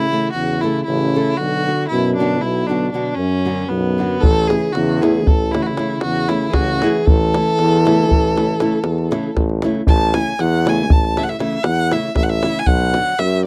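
A rich, focused violin with vibrato leads this festive, wild Balkan wedding-band excerpt in 11/8 at 234 BPM in A major, over a dark, smooth-topped trombone second line that stops at 9.4 seconds, boxy fingerpicked nylon-string guitar accompaniment and a clear, vintage tuba bass, while a tight, close davul enters at 4.2 seconds, all captured in a dry, close 1970s-style studio sound with light reverb.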